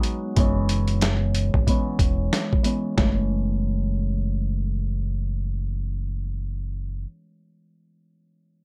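A swung boom-bap groove at 92 BPM in 4/4 sets a tough, moody tone in F# minor, in a short cut from a longer hip-hop piece. The sampler-style drum kit is compressed, pitched down and gritty, with a thumpy kick, a medium-tuned snare and hi-hat, a tape-warm character from being re-recorded in a small room, and it sits up front before dropping out at 3.2 seconds. A deep dub fingered electric bass enters at 0.4 seconds, dark, round and punchy, direct and amped, holding a low register through to the end. A fingerpicked Celtic harp carries the accompaniment throughout, acoustic and ringing, colored by cassette tape and high- and low-pass filtering, with a filter sweep across its opening 3 seconds. The harmony moves from E69 to F#m7 at 3.0 seconds, and the dry, close mix leaves the parts sounding immediate.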